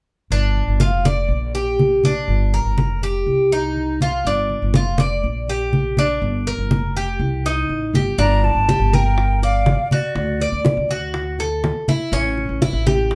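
Warm and nostalgic, this short excerpt from a longer piece is Cuban son in the guajira vein, moving at a straight 122 BPM in 4/4 in G minor. A bright, metallic Cuban tres sits up front with picked arpeggios on its doubled strings, while a woody, dark upright bass plucked on gut strings gives a thumpy low end, and low-tuned congas with a thick, damped skin are played with soft hands close and dry. The harmony cycles through G5, Bb6, Gm and Cm before shifting toward D and A7 in the second section. At 8.2 seconds a hollow, airy concert flute enters with a crisp attack and vibrato, carrying the melody until 10.6 seconds, and round, low-tuned bongos join at the same moment. The band sounds like it is playing live together in one room, with a short, wet studio reverb around the whole ensemble.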